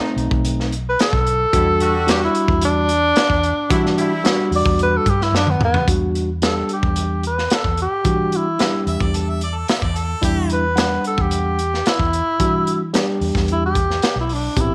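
A clean tine electric piano and a tight, punchy horn section open this mournful, brooding soul blues excerpt in E minor at 110 BPM, with a round, foam-muted electric bass and a gritty, saturated breakbeat kit joining at once beneath them. A breathy, whispered tenor saxophone takes the lead up front from 0.9 seconds with soft scooped notes and vibrato, while the horns fall away by 4.5 seconds and a drum fill carries the piece into its second section. A bright harmonica adds a brief second line from 8.9 seconds, all set in light reverb and small room ambience.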